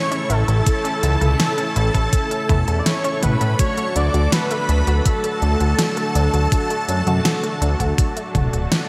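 A romantic, uplifting synthwave fragment at 82 BPM opens on a bold, warbling unison lead carrying the melody through digital delay, with shimmering string-machine violins above it, a lush detuned pad pumping beneath, a round, very quiet analog pluck arpeggio and dark, brassy synth stabs, soon joined by a fat-snared pop kit with gated reverb, a thick, nasal, saturated analog bass up front and, from 0.7 s, an overdriven, thumpy electronic kick, set in a bright 1980s-style digital hall as the chords move from A to D at 3.6 s.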